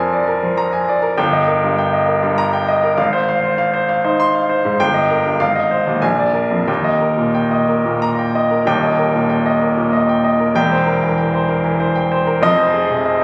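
Captured on a phone in a recital hall, the recording carries moderate hall reverb along with club reverb and compression, while the clear, intimate baby grand sits up front with audible action noise and long sustain. This heroic, sparkling classical study for solo piano moves in a rubato 3/4 at around 89-101 BPM in Eb major, spanning from Eb1 up to C6. Cut from a longer piece, the passage opens on Bb7/F, settles on Eb at 6.7 seconds, and restates its opening idea from 8.7 seconds before turning through C7/E to Fm7.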